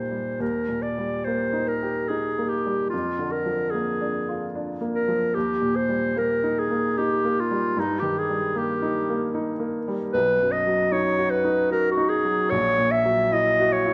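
Lyrical and tender, this romantic classical passage from a longer work sets a bright, classical-style clarinet melody up front over an intimate baby grand piano accompaniment with long sustain and audible action noise, flowing in a rubato 3/4 at 75 BPM in Eb major before turning to B major at 10.1 s, within the moderate reverb of a recital hall.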